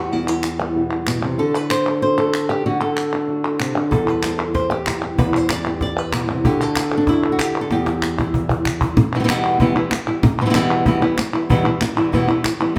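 A fingerpicked flamenco guitar, up front with audible finger squeak, carries a passionate, mournful melody in E minor at 190 BPM, while a second thumb-plucked guitar adds stabs in the background, crisp, close and dry palmas claps join at 0.3 seconds, and a woody cajon with faint snares and soft hands enters at 3.9 seconds, fills from 7.7 seconds, and the band plays live in one room with a wet large-studio reverb in this excerpt cut from a longer piece.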